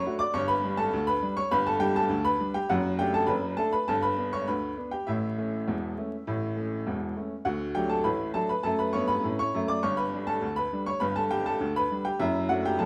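Ragtime piano in a lively, jaunty straight 2/4, where a clear, woody, boxy upright piano plays solo and up front across a range from E1 to D6, moving through chords like G, D/F#, A and D inside a moderate stone room with a live-in-one-room feel and a layer of vinyl crackle, cut from a longer piece.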